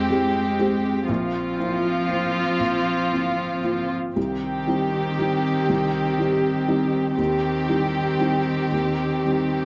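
This fragment of a melancholic, fragile neoclassical piece for piano and strings opens with all four parts together: a con sordino violin section carries the veiled melody up front, a single cello traces a dark second line beneath it, and a lone viola holds C4 in the background. A felt-muted upright piano gives soft, intimate accompaniment with audible action noise and short sustain, while the strings are bowed with light vibrato. At 118 BPM in a rubato 3/4, the harmony moves from Fmadd9 through Bbsus2 and Cm to Eb6, captured by close, detailed microphones with little reverb.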